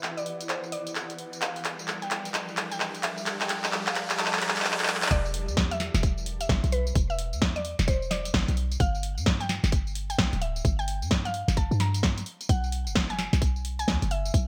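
UK garage in a two-step groove at 130 BPM in E minor, this late-night, soulful excerpt opens with a build-up: an ethereal, warbling vintage pad and a cloudy, evolving granular pad sit in the background with sidechain pumping, a very quiet riser, a punchy analog drum machine playing a fill of claps, hats, snare and tambourine, and a woody, round mallet-like synth pluck carrying the melody through a filter sweep. At 5.1 s the drop arrives, the pads and riser fall away, and a tight, layered electronic kick and a short, up-front 808-style sine bass with a noise layer join the swung drums and the chorused, delayed pluck. The production is bright and 1980s-flavored, with light digital ambience and gated reverb on the drum machine.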